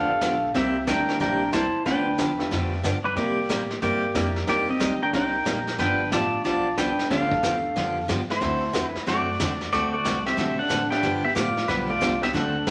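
Cheerful and swinging, this short western swing excerpt at 183 BPM in G mixolydian puts a clean, up-front pedal steel guitar with volume swells and slide on the melody, over a dark hollow-body jazz guitar second line, a bright, full-bodied jumbo acoustic guitar, a woody, thumpy pizzicato upright bass, a detuned, jangly honky-tonk piano kept very quiet, and a muffled, gritty, lo-fi brush drum kit with a punchy kick, all sitting in a wet studio reverb as the chords move from G9 through C9, Cm7 and D9.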